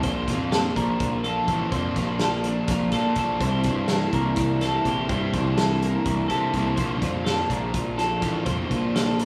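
Wet large-studio reverb and small-room ambience surround this 9.2-second cut from a longer math rock and midwest emo piece, intricate and wistful in Bb lydian at 249 BPM in 7/8. A bright, twangy twelve-string electric guitar plays high arpeggios over a second twelve-string guitar's clean, compressed accompaniment in the background. A double-tracked, crunchy overdriven guitar carries the riff, and an up-front fuzz bass growls underneath. A distant, roomy indie drum kit with a tight kick and medium-tuned snare plays hi-hat, kick and snare as the chords move from Bbmaj9 to C13 at 3.4 seconds and back to Bbmaj9.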